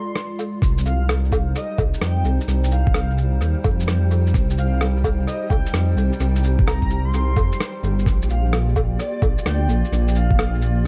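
A dark, detuned saw bass sits up front in this melancholic, wistful future garage excerpt, its deep, rumbling tone beating and saturated as it pumps against the sidechain from 0.6 seconds on. Above it, a warbling, tape-like pad holds mellow sustained chords with a nostalgic lo-fi character, chorus, built-in reverb and 12-bit sampler grit, moving from F minor to C minor and reaching B-flat at 8.1 seconds. A soft, breathy flute-like synth lead carries the melody with vibrato, chorus and analog delay, while a flickering, grainy texture stays in the background under its own reverb. The swung drums pair a compressed, pitched-down thumpy kick with a muffled, tape-warm kit of electronic rim click, cabasa, woodblock and shaker, the latter touched with sampler grit and analog delay. The mix is echo-heavy yet dry of room reverb, with vinyl crackle adding to its texture.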